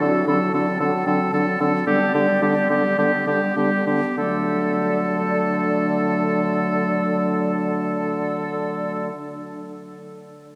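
A straight 4/4 pulse carries this spirited, graceful fragment of a quick classical-period movement for wind quintet: an airy wooden flute with vibrato sings the melody, a clear, up-front oboe takes the second line, a mellow French horn and a smooth clarinet in the background supply accompaniment, and the bassoon holds the bass on D3, the group bathed in a long cathedral reverb as the music slows through the first 4.2 seconds before the D7 and G/D harmonies settle on D.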